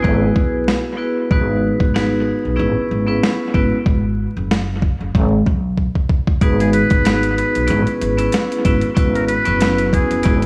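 Boom-bap hip-hop with a tough, moody swing, cut from a longer piece: gritty, pitched-down sampler drums with a thumpy kick and high-tuned snare drive a break under a woody, growly pizzicato upright bass and ringing hard-mallet vibraphone accompaniment bathed in dub echo, until a fill at 5.8 seconds brings a buzzy, metal-muted jazz trumpet solo back at 6.6 seconds, all wrapped in vinyl crackle and an echo-heavy small-room mix.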